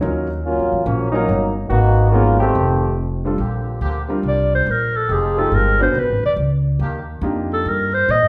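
Heard from further back in a reverberant large studio, this brassy, swinging big band swing excerpt opens with a mellow, vintage trombone section carrying the line over warm piano and a woody, thumpy pizzicato upright bass, then at 3.4 s a bright, nasal straight-muted trombone section holds soft sustained chords beneath a punchy subtone clarinet melody with scooped notes and light vibrato that enters at 4.3 s.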